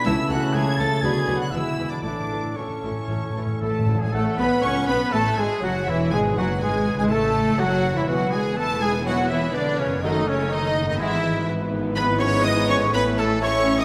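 A graceful, lively yet dramatic romantic orchestral passage unfolds at a fast, rubato pace in 4/4, with a lush, vibrato-rich violin section carrying the melody high above a second violin line, a very quiet viola accompaniment, and a smooth cello and distant double bass foundation. Airy flutes, a close-miked oboe, and a dark clarinet weave secondary lines in the background while a ringing concert harp adds arpeggios, mellow French horns and punchy, brilliant trombones hold sustained chords, and bright trumpets punctuate with stabs. Close, dry timpani played with medium mallets enter at 2.0 seconds for a fill and drop out by 6.8 seconds, all set in a moderate scoring-stage reverb.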